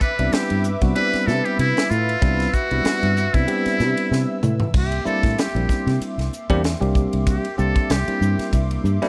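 The sound is dry and close, with little reverb, in this bright, slick cut from a longer electric jazz fusion piece at 95 BPM in 4/4, with a 16th-note swing. A trumpet with a metal mute carries the melody up front, its buzzy, thin and breathy tone marked by light vibrato, soft attacks and scooped notes. A bell-like, clean tine electric piano plays accompaniment, while a brassy, bold sawtooth analog pad with detuning, chorus and a filter swell holds sustained chords beneath it. A fingered electric bass sits up front with a dark, round, foam-muted sound, and a crisp, airy, polished drum kit with a high-tuned snare and tight kick drives the groove. The harmony moves from a Cmaj9 in C lydian to a C9 in C mixolydian at 4.7 s, following a drum fill that begins at 4.1 s, and from that point the muted trumpet takes a solo.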